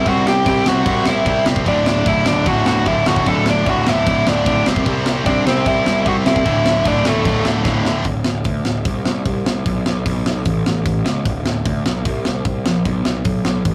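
Rowdy and energetic, this punk rock excerpt drives at 150 BPM in D mixolydian, with a dark, smooth overdriven lead guitar carrying the melody up front over three picked rhythm guitars playing riffs: a bright distorted one and a biting overdriven one set back in the mix, plus a very quiet, double-tracked high-gain layer. A growly, fuzz-soaked picked bass sits up front beside a tight metal drum kit with a gritty, saturated sound and a rolled-off top. A drum fill at 7.7 seconds leads into a second section at 8.1 seconds, where the guitars have finished and bass and drums carry on in a rough, booth-like rehearsal-room sound.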